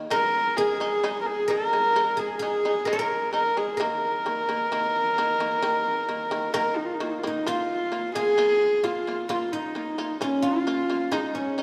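Vast and solemn, this short cut from a longer Mongolian folk piece moves at a slow 65 BPM in Bb yu mode, with a husky, earthy horsehead fiddle carrying the melody up front with light vibrato and portamento, a silvery, ringing guzheng playing a second line, and a buzzing, percussive shamisen plucking arpeggios beneath, all set in a moderate scoring-stage reverb, with a new section arriving at 7.5 seconds.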